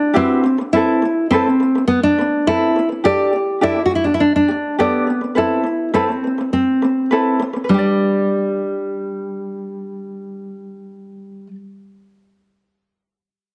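A carefree, easy-going pop excerpt in which a full-bodied, fingerpicked nylon-string guitar carries the melody while a bright, thumb-plucked ukulele supplies light accompaniment, both up front throughout and bathed in moderate plate reverb with a heavily compressed, radio-like sheen as the chords drift from Amadd9 and Gsus2 to settle on G at 7.7 seconds.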